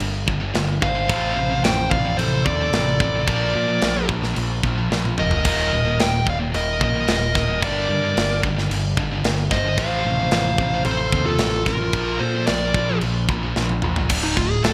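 Heavy metal at 111 BPM, relentless and heavy, where two bright, picked high-gain rhythm guitars, one of them scooped, sit in the background under a punchy, growling overdriven bass and a tight, saturated drum kit with gated reverb and drum fills around 4.9 and 13.6 seconds, while from 0.8 seconds a dark, smooth overdriven lead guitar carries the melody up front over a distorted second lead line, moving through chords such as Gm, F/A and Bb in a bright 1980s-style digital production with moderate plate reverb, cut from a longer piece.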